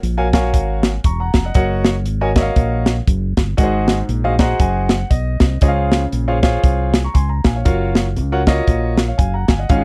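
A dry, close studio sound in a 1970s vein frames this short cut from an uptempo gospel piece at 118 BPM, swung in 4/4 with a reverent, soulful mood. A crisp, airy fusion drum kit with a medium-tuned snare and tight kick sits up front beside a dark, round, punchy fingered electric bass, while an intimate grand piano, its action noise audible, enters at 0.2 seconds to accompany chords moving from Gbmaj7 through Ebm7/Gb and Ab7 to Dbmaj7. The piano adds a fill from 4.1 to 5.6 seconds before the changes return to Gbmaj7.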